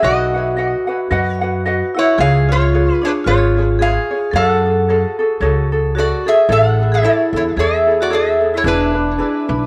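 A lightly swung 4/4 groove carries this sunny, dreamy Hawaiian piece, heard as a short cut from a longer performance. Up front, a metal-body resonator slide guitar plays the melody with fingerpicks, its bright, nasal, metallic tone trailed by tape echo. Beneath it, a vibraphone struck with medium hard mallets, motor off, adds a dark, smooth, ringing second line, while a thumb-plucked ukulele supplies light, warm accompaniment. A woody pizzicato upright bass on steel strings sits prominently in the mix, grounding the harmony as it moves through B, C#7 and F#madd9 before shifting at 6.5 seconds to Amaj7 and E7. A moderate echo chamber reverb and studio ambience give the ensemble a gently spacious glow.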